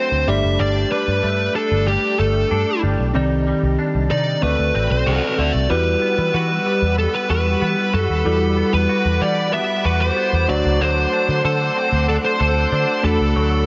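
A straight 4/4 pop groove sets a glossy, nostalgic mood in this short cut from a longer piece, anchored by a round, foam-muted picked bass sitting up front from 0.1 s. A dark fuzz lead guitar carries the melody through shimmer reverb and delay, over a bell-like tine electric piano with phaser and a twangy, compressed clean guitar riff thickened by chorus and echo. At 5.7 s a mellow, warbling organ-string pad enters with sustained chords as the harmony moves to Emadd9, the whole mix sitting in a lush hall reverb with a dulled top end.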